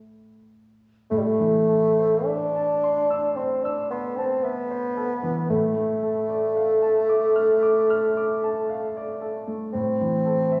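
Elegiac and solemn, this romantic classical excerpt in unhurried rubato sets a dark, smooth-topped bassoon with light vibrato up front as the solo melody from 1.1 seconds, over the accompaniment of a warm baby grand piano that opens alone, the pair heard from further back in a recital hall with a long reverb tail as the harmony moves from A minor to D minor over A and home again.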